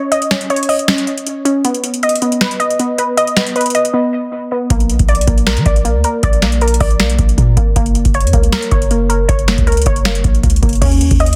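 A warbly, dusty pluck opens this brooding trap excerpt, playing arpeggios with a warm, detuned sawtooth tone, a layer of lo-fi noise, a filter sweep, chorus and tape echo, all sitting up front. A booming analog drum machine joins at 0.1 seconds with a deep kick, crisp snare, metallic hi-hats, finger snaps and a crash cymbal, overdriven and re-recorded in a small room for a gritty, hard-hitting punch. The tempo is 157 BPM in 4/4 with a half-time feel, and the opening stretch moves from Dbsus2 to B before a boomy, sine-like 808-style bass arrives at 4.7 seconds. From there, deep, mellow bass notes with a fast attack and natural decay anchor the harmony through Bb and Gb, closing on Eb7(no3). The sound is dry and close, with little reverb, and the master is dense and heavily limited in a modern style.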